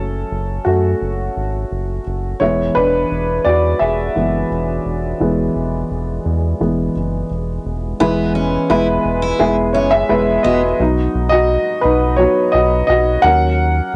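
A dark, worn upright piano with woody action noise, a slightly detuned tone and cassette-tape grit sits up front and takes the lead in this hopeful, uplifting piano-driven pop excerpt at 86 BPM. A round, deep analog bass holds the low end throughout, and a full-bodied picked steel-string acoustic guitar adds a brief taped riff from 8.0 to 10.6 seconds before the music settles into B major at 10.8 seconds, all within the snug booth ambience of an intimate home cassette recording.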